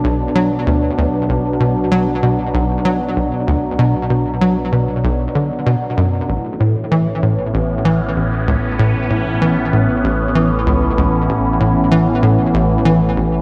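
A tight, punchy sequencer bass leads this hypnotic, cosmic ambient passage, cut from a longer piece, driving a riff at 96 BPM in 4/4 with a sawtooth and square-wave edge, ring modulation, and a fast-attack filter pluck that decays into lush chorus and tape echo. Beside it sits a sweeping resonant pad of detuned sawtooth tones, its slow filter swell and long release holding bright, full-bodied sustained chords colored by chorus and phaser. Underneath, a fat analog bass rests on a single low B, thick and plucky yet sustained, and it fades in across the whole span from 0.0 to 13.4 seconds while staying in the background. The harmony moves from B minor to A at 6.3 seconds. The mix is echo-heavy with a cassette tape character and a moderate echo chamber reverb, giving the parts a drifting, evolving spaciousness.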